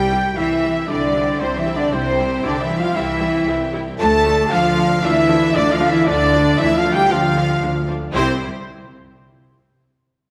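A straight 4/4 pulse at 116 BPM drives this heroic, majestic cinematic cue in C major, moving from C to D minor at 4.0 seconds and back to C at 8.1 seconds. The mellow French horn section holds tight sustained chords, while a warm trumpet section adds soft-attack stabs in a classical style. Two bowed violin sections sit in the background: one, even with light vibrato, carries the melody, and the other, clear, distant and lush, adds a second line, joined by a pure, straight-toned flute section on a further second line. Beneath them a very quiet rich string section sustains chords, a faint viola section enters at 0.1 seconds with accompaniment, and the bass is anchored by an intense cello section and a smooth double bass section. A wet scoring stage reverb lends the passage a spacious feel, and it is cut from a longer piece.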